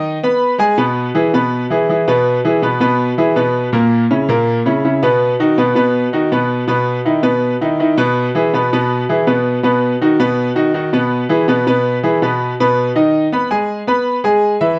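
A dark studio sound with moderate reverb frames this festive, danceable Latin fragment in E major at 163 BPM, where a clear, smooth grand piano with a vintage tone and long sustain plays solo and up front from A#2 to B5 for its full 14.8 seconds, moving through chords such as E/B, A#dim and B before shifting to G#m at 12.6 seconds and returning to E as the cut from a longer piece ends.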